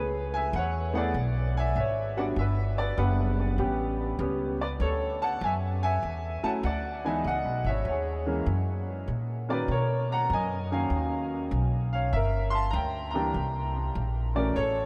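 A clear baby grand piano carries the melody from the first moment to the end, its open, long-sustaining tone sitting up front and colored by a lush chorus and an analog delay. Beneath it, an upright bass holds down the low end throughout, plucked with a woody, warm character and placed close in the mix. This is a smoky, moody jazz fragment with a swung feel, cut from a longer piece. The harmony drifts through rich extended chords, moving from F#9sus4 through Em9, A9 and Dmaj9, then on to C#m9 and Bmaj9 before reaching Gm near 12.1 seconds and settling on C7(no3) at 13.3 seconds. A huge ambient reverb soaks the dreamy mix, leaving a hazy, lingering tail behind every phrase.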